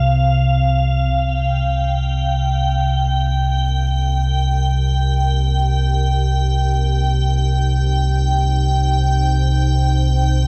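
Steeped in a cavernous cathedral reverb with cassette-tape grain, this brief excerpt of dark ambient drone unfolds in free time, tuned to A4 = 437 Hz: a deep, rumbling, nasal drone sits up front with lush chorus from 0.0 s, an icy, crystalline glass pad hovers high above it with an airy noise layer, and from 1.1 s a moody, detuned analog pad fades in low in the mix on a sustained Eb chord, leaving an ominous, unsettling mood.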